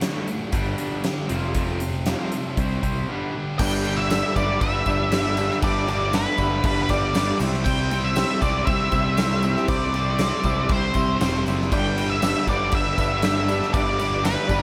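A dark, fuzz-laden lead guitar sits up front in this driving, confident classic rock excerpt, entering at 3.6 seconds over a huge arena drum kit with a fat snare, punchy kick and bright cymbals. Beneath it, an overdriven electric guitar and a very quiet, tight distorted guitar play riffs from the start, and a picked electric bass comes in at 0.5 seconds. After a short break ending at 3.6 seconds, a brilliant grand piano with audible action noise, a mellow vintage organ-string ensemble with phaser and chorus, and a jingly tambourine fill out the sound, all set in light reverb.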